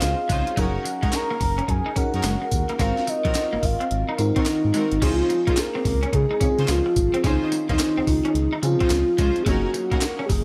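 A soft, octave-layered synth lead carries the melody across a range of Eb4 to Bb5, its round, dark tone shimmering with chorus, tremolo, vibrato and delay over an upbeat, bouncy new jack swing groove in Db major at 108 BPM, swung on the sixteenths. Beneath it, an FM electric piano blended with a dreamy pad layer supplies lush, detuned accompaniment treated with chorus and phaser, while a smooth, mellow synth bass anchors the low end from Gb1 to Db3. A gritty, compressed breakbeat sampler-style kit sits up front with a thumpy kick, high-tuned snare, hi-hat, handclaps, tambourine and crash cymbal. A rich studio string section adds bowed stabs with vibrato, and from 0.3 seconds an electric guitar at the edge of break-up picks a compressed riff colored by analog chorus. Cut from a longer piece, the 10.4-second passage repeats one section twice over Dbmaj9, Gb6 and Ab13 chords, all set in a light reverb.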